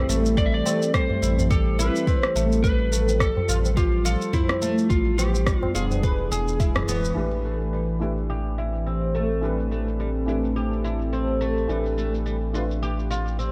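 Earthy and mystical, this organic downtempo fragment in A minor moves at 106 BPM in 4/4 with a swung sixteenth-note feel, cut from a longer piece. A slightly broken-up electric slide guitar carries the melody with delay through the first 6.6 seconds, while a woody, fretless oud plucks double-string arpeggios through a low-pass filter and delay, set over a smooth, detuned sawtooth pad whose sustained chords pump with the sidechain. A round sine sub bass sits up front, and a deep, layered electronic kick runs until 6.7 seconds alongside a deep house kit of crash, rim click and shaker with filtered cymbals and snare. A low-tuned tabla with a short ring ticks close and dry in the background. After a band accent at 6.7 seconds, a soft, felt-muted upright piano joins as accompaniment from 7.1 seconds, intimate and mellow with delay, as filter sweeps move across the drums and oud. The harmony cycles from Am7 through Fadd9/A and G7/A to E before returning to Am7, all bathed in light reverb.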